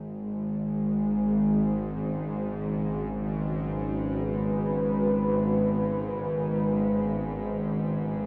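In free time, this dark, desolate ambient drone fragment opens with a tense, string-like bowed drone sitting low and up front with vibrato, joined at 1.9 s by a deep, moody pad with chorus and shimmer reverb holding a sustained F#sus2 over G#, all steeped in a cathedral-sized reverb and the warbling pitch drift of worn cassette tape.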